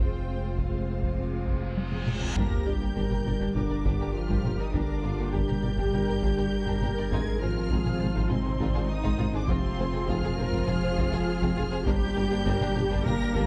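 A straight 4/4 pulse at 101 BPM drives this tense, futuristic excerpt of a hybrid orchestral and electronic film score in G phrygian, with heavy-stick taiko ensemble drums entering at 0.6 s and a reverse cymbal and sub drop sweeping in at 1.4 s before a dark, close-miked solo tuba joins at 2.4 s. Lush, vibrato-laden violins carry the high melody over a second violin line, a focused viola section, rich cellos and a woody, distant double bass section, while mellow French horns and an airy, breathy pad with chorus hold sustained chords over an Fm, Gm and Ab6 progression. A soft, round pluck adds quiet arpeggios and a thick, saturated sub bass anchors the low end, all set in a moderate scoring-stage reverb with a dark production.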